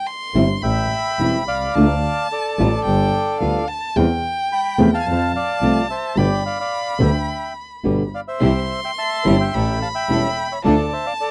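Tango in C major, nostalgic and elegant, moving at 108 BPM in 4/4 with a rubato feel, this short excerpt is cut from a longer piece. A reedy, dark bandoneon carries the melody up front, close-miked and dry, while a bowed violin sings a second line above it with vibrato, soft attacks and expressive portamento. A fingerpicked flamenco guitar provides the accompaniment, its finger squeaks audible, and a rich bowed double bass holds the low end with smooth, even vibrato. At 8.4 seconds a studio string section joins in the background with focused, bowed stabs, as the harmony moves from C through A7 toward Dm. The sound is that of a close 1970s-style studio recording, touched with light reverb.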